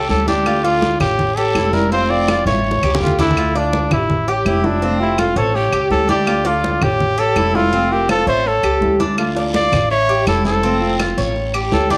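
Nostalgic and danceable, this excerpt from a longer Cuban son and guajira piece moves at a brisk 165 BPM in straight 4/4, in D harmonic minor, cycling through Dm, A7 and F. A trumpet with light vibrato carries the melody up front, while a breathy, bamboo pan flute with a hollow chiff traces a second line in the background. The Cuban tres picks metallic arpeggios on its doubled strings, a thumpy, dark upright bass plays pizzicato below, and a fingerpicked flamenco guitar adds accompaniment further back. Bright, thin-skinned congas and woody claves keep the percussion going, and a raspy, distant guiro drops out at 3.4 seconds before returning at 9.2 seconds. A moderate echo chamber reverb and small room ambience give the mix a close yet resonant feel.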